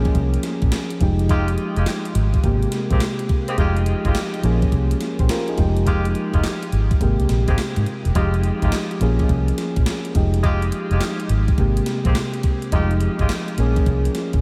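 A swung 105 BPM new jack swing groove in 4/4 drives this bouncy, confident R&B excerpt in F minor, built on a gated 80s digital drum machine with a thumpy kick, gated-reverb snare, handclaps and hi-hat sitting up front. A dark, foam-muted fingered electric bass and soft, round electric-piano-like synth keys with chorus cycle through Bbm7, Fm9 and Abmaj9, while a tight vintage horn section adds punchy stabs with light vibrato and diffuse delay from 1.3 s to 13.3 s. The mix is soaked in a huge, dreamy ambient reverb.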